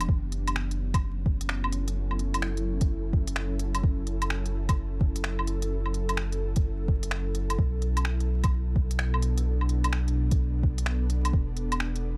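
This future garage excerpt moves at 128 BPM in 4/4 with a swung sixteenth-note feel, sitting in F# minor with a night-time, ghostly mood. An ethereal, airy pad of detuned, unison sawtooth and triangle tones holds sustained chords throughout, its slow attack and long release softened by ensemble chorus and built-in reverb, and it carries sidechain pumping. Beneath it, a deep, round sine sub bass sits up front with a mellow, sustained tone and the same sidechain pumping. An up-front organic electronic kit of finger snaps, crisp hi-hats and woodblock opens the excerpt, joined at 0.1 seconds by a soft, produced electronic kick. The harmony rests on F#m7 before shifting to Bm7 at 7.6 seconds, and the whole sound carries a dry, gritty hardware character flecked with vinyl crackle.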